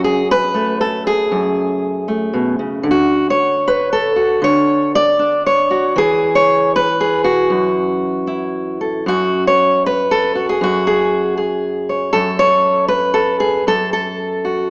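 Melancholic and reflective, this short folk excerpt in 3/4 features a solo fingerpicked steel-string acoustic guitar, dark and woody with the dull ring of old strings, set up front in a moderate concert hall reverb with a small speaker sound as it moves from F#madd9 through Dmaj7 and a brief chordless passage to F#m7 before returning to F#madd9 at 9.1 seconds.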